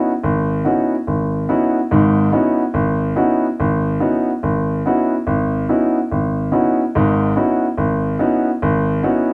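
Swung eighths at 143 BPM in 4/4 carry this cool, searching jazz fragment in C# minor, tuned to A4 = 437 Hz, where a natural-toned baby grand piano plays solo from 0.0 to 9.3 s, sitting up front with long sustain on a lingering C#m11 chord inside a moderate stone room reverb that captures the live feel of a band playing together in one space.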